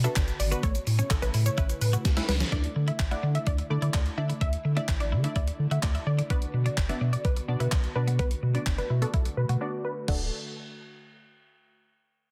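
A gated 80s digital drum machine sets a straight 4/4 pulse at 127 BPM for this carefree, summery dance-pop piece in D major, its thumpy kick, gated-reverb snare, handclaps, hi-hat, shaker and crash sitting up front with a tape-warm, small-room character. Underneath, a deep, round sine sub bass holds the low end with sidechain pumping. Punchy, warbling sawtooth chord stabs, coloured by chorus, phaser and a low-pass filter, also pump as they move through Bm, A, Dsus2 and back to Bm. A lush, detuned unison pluck carries the melody through a delay, while in the background a clean, picked twelve-string electric guitar plays a compressed riff beside an airy, breathy pad that pumps as well. This cut from a longer piece opens on a drop with a drum fill at 2.0 seconds, has a filter sweep from 2.5 seconds and a short break at 9.6 seconds, then lands on D in a dense, heavily limited master with little reverb.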